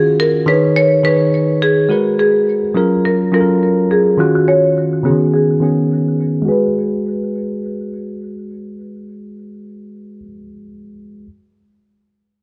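A woody, percussive marimba struck with hard mallets carries the melody over a bell-like, bright tine electric piano from the first moment. Both sit up front in a moderate, lush hall in this smooth, mellow afrobeats passage at 105 BPM with a light swing in G# dorian. A filter sweep runs through the opening 6.5 seconds as the chords move from B6/D# through G#m9, F#maj7 and D#m9. The marimba's delayed line then drops out at 10.2 seconds, leaving the clean keys to ring on briefly in this fragment cut from a longer piece.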